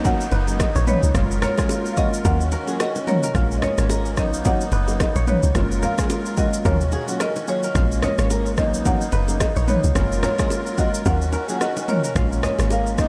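Sunny and romantic, this afrobeats excerpt glides over a swung groove where a woody marimba carries the melody through delay, a worn, slightly out-of-tune tine electric piano and a reedy, shimmering musette accordion fill in chords, a twangy clean electric guitar riff enters at 0.3 seconds, a deep, round log drum bass and a punchy, up-front deep house kit of kick, rim click, shaker and toms drive the beat, ringing congas and bongos sit in the background, and a very quiet downlifter ends by 3.3 seconds, all within a light digital ambience over a looping Bmaj7, F#maj7, D#m7, A#m7 progression.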